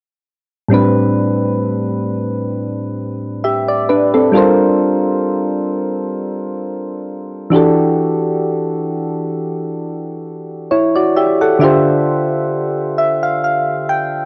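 Soft, round electric-piano-like synth keys open the recording at 0.7 s, carrying this sensual, late-night R&B piece alone as its only part. The tempo sits at a slow 66 BPM in 4/4 with a light 16th-note swing, and the harmony moves through lush minor-eleventh chords in A minor: Am11, Gm11, Em11, then Dm11. The keys have a gentle, triangle-and-sine tone with a quick attack that decays, colored by a filter sweep and a shimmering chorus, and they sit up front in the mix. A short fill from the keys arrives at 12.5 s before the section ends at 14.3 s. A moderate small-room reverb and the soft grain of a home cassette recording give this cut from a longer piece an intimate, worn character.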